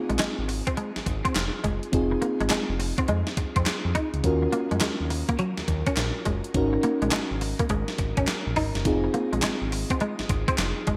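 R&B in a new jack swing style, this short cut from a longer piece feels confident and slick, riding a swung sixteenth-note groove in 4/4. Up front, a gated 1980s digital drum machine punches through with a thumpy kick, an overdriven snare wrapped in gated reverb, hi-hat and electronic handclaps, all sounding re-recorded in a small room. A very quiet group handclap adds a hollow, human touch from 0.2 seconds. Underneath, a smooth gliding synth bass blends sawtooth and triangle tones with vibrato and portamento. A soft, round FM electric piano with a dark edge supplies chorused chords, while a clean, twangy fingered electric guitar plays a riff near the front, both bathed in shimmer reverb. The harmony moves from Fm7 through Ebm7 and Ab7sus4 before returning to Fm7 at 8.9 seconds, and the whole mix carries a bright 1980s digital sheen with moderate plate reverb.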